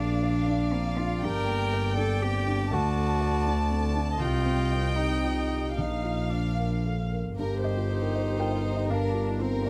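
A rubato 3/4 pulse drifting between 109 and 125 BPM carries this reflective, melancholic neoclassical piece for piano and strings, cut from a longer work, moving from Bb through Gm, D and Cm and back to Bb before turning to Eb/G at 7.4 seconds. A chamber violin section sings the melody with vibrato and a soft sul tasto touch, while a clear, nasal cello traces a second line. Beneath them, a dark, mellow concert grand with audible action noise and a viola with light vibrato and an airy bow fill in the accompaniment, and a rich double bass sits up front, all captured by close, detailed microphones in a dry, intimate sound.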